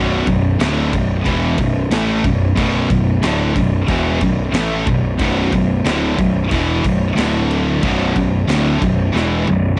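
This cut from a longer heavy metal piece has the sound of a home recording on cassette, set in a small room. The mood is dark and aggressive, with a straight four-beat pulse driven by a modern studio drum kit that enters at 0.3 seconds, featuring a punchy kick, a high-tuned snare, toms and crash cymbal, all captured with an airy, polished acoustic tone. Up front, a high-gain distorted guitar plays a bright, picked riff in its low register, while a second, overdriven electric guitar plays a riff further back in the mix, both carrying a tape-worn grit. A growly fuzz bass, picked and up front, sits deep beneath them, its direct-and-amped tone adding snarl to the bottom end. The harmony stays on B minor before moving to D5 at 7.2 seconds and returning to B minor, and a drum fill at 9.2 seconds closes the passage.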